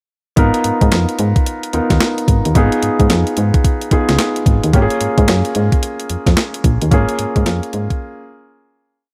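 Confident and bouncy, this short new jack swing R&B piece sets a hard-swung, overdriven 12-bit drum-machine beat, with a thumpy kick and a snare layered with clap, against a punchy, round FM bass line full of muted ghost notes, while an intimate grand piano with audible action noise holds rootless chords dressed with grace notes in a digital ambience, before the music fades from 6.9 seconds and the piano carries on alone from 8.0 seconds.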